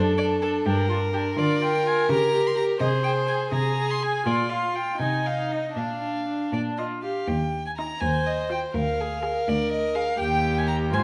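Set in the wet bloom of a recital hall, this dramatic, restless excerpt from a quick classical-period string quartet movement moves in a rubato 6/8 at 78-85 dotted-quarter beats per minute, with an up-front melody violin of reedy gut-string tone and light vibrato entering at 0.2 s over a warm second violin, a distant, nasal viola and a rich, up-front cello bass, before the harmony shifts to a new section at 7.3 s.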